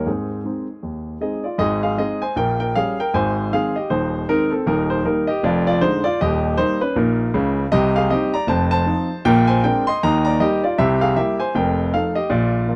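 A dry, close 1970s-style studio sound with light reverb and a touch of room ambience frames this exuberant, playful stride jazz fragment, cut from a longer piece, where a solo grand piano, polished and up front, swings in 4/4 across a span from Eb1 to C6 through changes such as Cm, F7, Bb9 and C7 over its 12.8 seconds.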